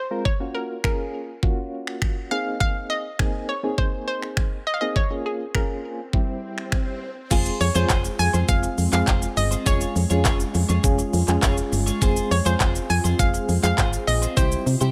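A dry mix with little reverb opens this confident, driving dance-pop clip at 102 BPM in straight 4/4, cut from a longer piece. A hollow, bouncy square-wave pluck carries the melody up front with chorus and digital delay, over soft electric-piano-like synth keys colored by chorus and tremolo, while a layered, produced pop kit brings a knocking kick, crisp hats, finger snaps, handclaps, shaker and crash. The chords move through Gbmaj7, Abadd9, Bbm7 and C before an electronic swell at 5.9 s leads into the second section. At 7.3 s the music settles into F minor as a punchy, round FM bass arrives with sidechain pumping, joined by a twangy, compressed twelve-string electric guitar riff with analog chorus. A glassy, ethereal FM pad enters very quietly at 8.1 s, sustaining chords under the Fm, Db/F and C changes.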